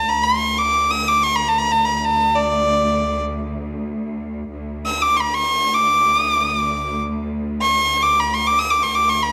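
A single biting, nasal violin plays a stately, passionate melody in free time over a smooth, vibrato-rich cello section holding a low drone on D, an Arabic maqam huzam fragment in which the close, airy-bowed violin sits up front while the cellos lie quieter beneath, all carried by a moderate recital hall reverb.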